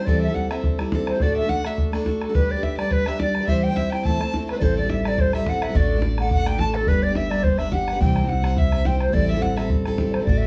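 A driving 4/4 reel at 212 BPM with lightly swung eighths, this wild Celtic folk excerpt in A dorian cycles through Am7, D/A, G and C. An airy, hollow wooden flute carries the tongued melody with vibrato, shadowed by a dark, woody fiddle second line with light vibrato and portamento, while a picked parlour acoustic guitar with fresh strings sits up front and a boomy, band-limited, vintage-sounding bodhran pounds throughout. At 4.6 s a pizzicato upright bass on steel strings joins, all heard from further back in a wet small room.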